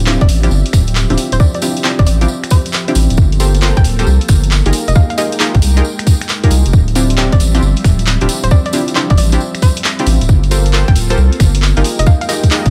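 A smooth, warbling vintage pad pumps under a punchy, bright sawtooth chord stab with chorus and digital delay, while a thick, saturated sine sub bass sits up front, opening this bouncy, soulful two-step UK garage cut in D minor at 135 BPM with 66% swing on the sixteenths. By 0.2 seconds, a tight, up-front electronic kick, analog drum-machine finger snaps, handclaps and hi-hat, a jingly, close tambourine and a hollow, nasal square-wave pluck melody with chorus and delay have joined, riding a Dm11, Gm11, Fm11 progression. The sound is dry, with little reverb, and vinyl crackle runs through the excerpt.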